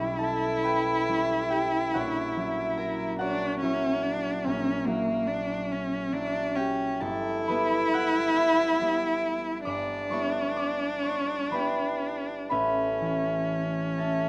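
Romantic classical duo for cello and harp, tender and lyrical, moving slowly at 40-48 BPM in a flexible, rubato 12/8. The bowed cello carries the melody up front, its soft attack, vibrato and portamento giving it a warm, expressive voice. The mellow, ringing harp accompanies across a broad range as the harmony drifts from C#m7b5/B through F#7/A# and Em/G to A, all set in a moderate studio reverb in this short excerpt from a longer piece.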